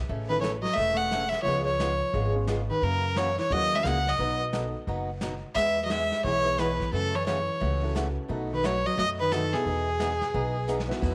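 Bathed in a moderate spring reverb, this cheerful western swing country tune moves at 176 BPM in E major, with a clear, focused fiddle carrying the bowed melody up front over a thumpy pizzicato upright bass, a dark, clean hollow-body jazz guitar playing a second line, a boxy ladder-braced acoustic guitar with old strings picked as accompaniment, and a smooth vintage upright piano and a brushed drum kit with dark cymbals sitting in the background, the drums playing a fill at 10.7 s.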